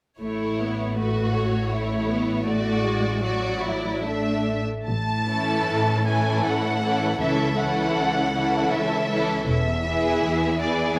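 Close, detailed microphones and a moderate scoring-stage reverb frame this serene, lyrical slow romantic movement for string orchestra in A major, which breathes with rubato in 3/4 at about 69-82 BPM: up-front violins sing a smooth, vibrato-laden melody over an expressive second violin line, violas add soft-attack accompaniment with portamento, and distant cellos share the bass with a rich, lush double bass section that drops out at 10.1 s, with a new section beginning at 4.9 s in this short passage cut from a longer piece.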